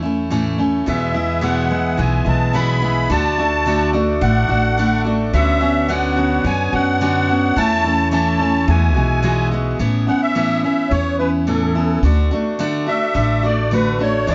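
In a straight, steady 4/4, this pastoral, gentle acoustic folk piece opens with a full-bodied picked steel-string guitar, finger squeak and all, and a woody, thumpy pizzicato upright bass, both up front. From 0.9 seconds a shimmering, reedy musette accordion solos on a second line, backed by a nasal, breathing hand-pumped harmonium holding sustained chords until 9.8 seconds, where the music moves into a new section. A moderate large studio reverb surrounds the players, and the sound has a mellow, rounded top end.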